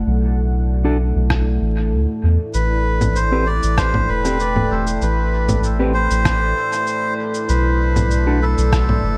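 A dark, warbling ambient pad with a chorused, vintage sawtooth sheen opens this hazy ambient dub excerpt, sustaining chords over a round, soft sub bass that sits up front from the first moment. At 0.8 seconds a clean, fingered electric guitar adds mellow stabs trailed by dub echo. At 1.3 seconds the drums arrive: a muffled, thumpy, pitched-down kick sitting in the background alongside a sampler-style rim click, cabasa and congas, compressed and tape-softened, with echo on the hand percussion. A reedy, breathy melodica takes the melody up front at 2.5 seconds, its airy, nasal tone also carried by dub echo as the harmony moves from Bm7 to Am9 and back to Bm7. Vinyl crackle, light reverb and a digital ambience lend the whole recording a spacious, hazy atmosphere.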